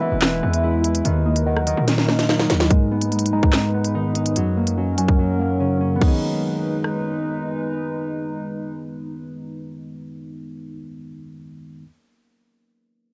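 A hazy cassette home recording with a close booth sound opens this cold, menacing half-time drill cut at 145 BPM in G# minor, where a velvety background synth lead drifts over a mellow tine electric piano, a warbly, nostalgic tape-like pad and a ringing thumb-plucked Celtic harp, while a punchy sine 808 bass and an up-front electronic kit with a hard-clipped kick, sharp snare, crisp hats, handclaps, rim clicks and a crash drive the opening until a drum fill at 1.9 seconds and the bass dropping out at 2.7 seconds, after which the kit carries on beneath the keys, pad and harp as they move the chords from E and D#m to G#m and F#.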